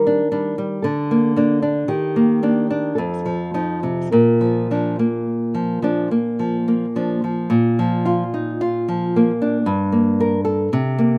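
Recorded outdoors with light reverb, this yearning, melancholic excerpt of a romantic duo in Bb major drifts in rubato 3/4 at 52-58 BPM, as a dark, thumb-plucked nylon-string guitar with fresh strings carries a small melody touched by slapback echo until 6.3 s, while a second, fingerpicked nylon-string guitar sits up front with a warm accompaniment that continues alone to 11.2 s.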